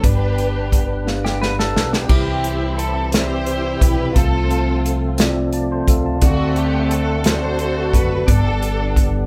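Hopeful and reverent, this slow gospel passage in a straight 6/8 feels like a short window into a longer performance, captured as a band playing together in one room with light reverb. A lush, bowed string section carries the melody with expressive vibrato and a smooth top, while a mellow tine electric piano heard through its built-in speakers supplies clean accompaniment and adds a brief fill around 5.2 seconds. Behind them, a fat, percussive tonewheel organ holds sustained chords with key click, third harmonic percussion, chorus vibrato and a slow rotary speaker, sitting in the background. A woody, thumpy pizzicato upright bass anchors the low end, and an airy, polished country drum kit sits up front with a punchy kick, medium-tuned snare, hi-hat and crash, playing a fill from 1.1 to 2.1 seconds. Between 1.2 and 2.3 seconds a bright, twangy, compressed electric guitar picks out a short second line before the harmony moves on through C, F over C and D7 to settle on G.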